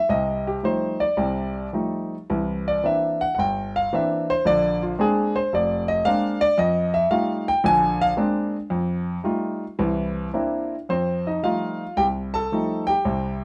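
Swung eighths in 4/4 at 111 BPM, loosened by rubato, carry this short solo jazz passage in F mixolydian, tuned to A4 = 443 Hz, with a sophisticated, warm mood. A clear, intimate grand piano sits up front, spanning F1 to A5, its short sustain and audible action noise giving a natural, close feel within a moderate studio reverb. It moves through ninth chords on F, C and Bb before a new section arrives at 10.9 seconds, and the 13.4-second clip is cut from a longer piece.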